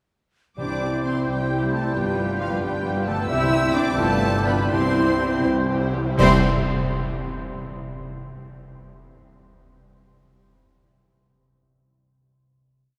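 In 6/8 at 79-90 BPM counted in dotted quarters, this cheerful, spirited C major orchestral piece moves between C and G7 chords and gradually slows before a full-band accent and final chord at 6.2 s, set in a wet cathedral reverb. A rich studio violin section carries the vibrato melody, doubled at the octave by the cello section and a tight trumpet section, while a very quiet second violin section and lush violas play a rocking two-note figure and hollow flute, mellow oboe, dark clarinet, bassoon and a French horn section hold sustained chords. Beneath them, a distant double bass section plays bass on the beats, a ringing concert harp spreads broken chords until 7.7 s, soft-mallet timpani add single strokes on bass notes, and cymbal swells, clash cymbals and bass drum strokes arrive from 3.3 s.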